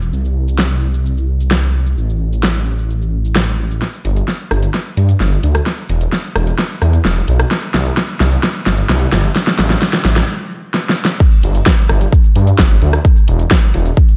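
A straight 4/4 pulse drives this euphoric, uplifting slice of festival progressive house, cut from a longer piece. A big-room dance drum kit sits up front from the start, its huge snare, metallic hats, crash, rim click and shaker pushed through overdrive. Beneath it, a thick, detuned saw bass in unison carries the low end with a fast attack and sustained, saturated tone, its chorus effect adding lushness while sidechain pumping makes it breathe against the beat. At 3.8 seconds a build-up begins, driven by drum fills, before a brief stop at 10.3 seconds. The drop lands at 11.2 seconds, where a punchy, overdriven electronic kick joins, the loudest part in the mix. The production is dark and warm, wrapped in light reverb and digital ambience.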